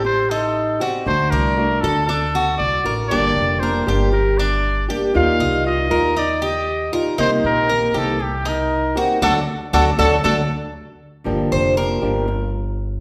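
A clear, punchy trumpet carries the melody up front in this short, sultry and danceable Latin cut from a longer piece, its close-miked, pop-style lead marked by scooped notes. Beneath it, a bright, metallic Cuban tres picks arpeggios on its double strings, some octave-doubled, while a warm flamenco guitar fingerpicks the accompaniment on fresh strings, with an audible finger squeak. A woody, dark upright bass with gut strings is plucked pizzicato, giving a thumpy foundation up front in the mix. The harmony moves from a half-diminished opening through minor and major colours, and the band hits an accent from 9.2 s before the trumpet drops out at 10.4 s. From 11.3 s the tres steps forward for a solo, with the whole performance bathed in the wet reverb of a recital hall.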